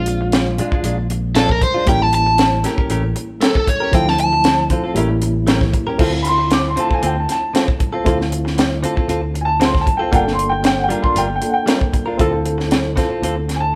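An overdriven semi-hollow guitar opens this smoky, soulful straight-eighth soul blues in D minor at 116 BPM, its picked, hollow-body tone sitting up front for a short solo that stops at 4.7 seconds. Underneath, a barky, reedy electric piano with tremolo plays accompaniment through its built-in speakers, while a round, amped fingered electric bass holds the low end. A twangy, compressed clean electric guitar, recorded direct, adds bright picked stabs, and a dry, tight funk drum kit with a high-tuned snare and tight kick drives the groove from the front of the mix. At 6.2 seconds a dark, woody upright piano takes over the lead with a mellow, vintage-toned solo high in its range. The band sounds like it is playing live in one room with moderate large-studio reverb, moving through chords such as Bb7, A7b9, Dm7 and Gm7 in this excerpt cut from a longer piece.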